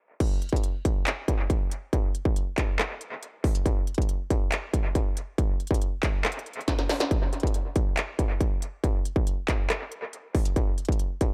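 A half-time 4/4 groove at 139 BPM drives this dark, brooding hip hop excerpt, carried entirely by an electronic industrial drum kit that plays from 0.2 to 11.3 seconds. The up-front kit pairs a distorted kick and clanging snare with crisp hi-hats, handclaps, rim clicks and crash cymbal, all given a tape-warm character, distortion and analog delay, with a short drum fill at 6.7 seconds. The mix is dry of reverb yet heavy with echo.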